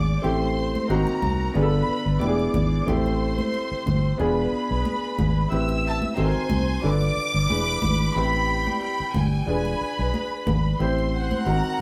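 Silky and smooth, this lush 1970s-style soul groove moves at an easy, lightly swung pace, heard as a short cut from a longer piece. A vintage fingered electric bass sits up front with a round, punchy, foam-muted tone, while a dark concert grand piano supplies mellow, intimate accompaniment with deep bass and audible action noise. Behind them, a dark studio string section carries a woody, distant second line with vibrato, and high-tuned congas with a thin skin and hard hands play brightly in the background. At 5.9 seconds a violin section enters up front with the melody, its reedy, gut-string tone giving a period-style sweetness. The chords circle through minor sevenths and ninths and dominant sevenths with flat-nine colour, and the band sounds as if playing live together in a small room with a wet reverb.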